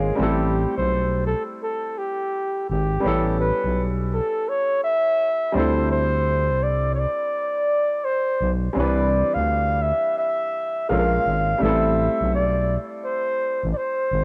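Jazz-hop at a relaxed, cool 84 BPM in 4/4 with a swung 16th-note feel, cut from a longer piece and captured as a home cassette recording in a small, wet booth. A mellow, soft-edged flugelhorn carries the jazz solo melody up front through cassette tape, plate reverb and analog delay, while a woody upright piano with short sustain accompanies through tape and plate reverb, and a thick, growling FM bass holds the low end with a fast attack. The harmony moves from Am7 through A9, D9sus4, Cmaj9 and a brief Bbm7 before settling back on Am7 at 11.6 seconds.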